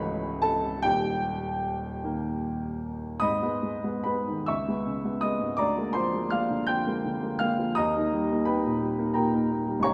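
A wet concert-hall reverb surrounds a clear, woody upright piano placed up front in this brief fragment of a romantic classical character piece for solo piano. Played in 6/8 with free rubato, the piano reaches from C#1 in the deep bass up to G6, and the mood is brooding and bittersweet. An opening passage gives way at 3.2 seconds to a second section, which carries the music until the cut at 9.9 seconds.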